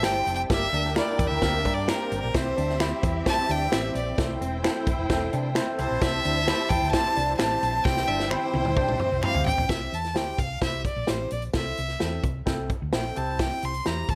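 Uplifting, joyful 1960s-style soul in which a clear, intense bowed violin solos up front over a lush, dark string section, a barky tine electric piano with tube saturation and phaser, a very quiet gritty tonewheel organ on slow rotary, a slightly broken-up lo-fi guitar riff, a round, punchy hollow-body bass, a natural country drum kit with a punchy kick, and very quiet finger snaps, until a drum fill at 7.9 seconds leads at 9.7 seconds into a sparser passage where the violin carries on over electric piano, bass and drums in light studio reverb.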